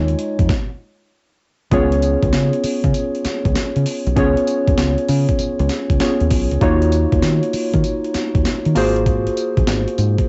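A swung sixteenth-note groove at 98 BPM drives this bouncy, slick new jack swing excerpt, built on a gritty, overdriven sampler-style breakbeat kit of thumpy kick, medium-tuned snare, hi-hat and tambourine, a dark, punchy fingered dub bass with tube saturation, and mellow, detuned analog keys with filter sweeps, chorus and plate reverb moving from Dbadd9 to Ebm9 and Ab13, with a stop from 0.5 to 1.7 seconds before the muffled home-cassette sound settles into its longer main section.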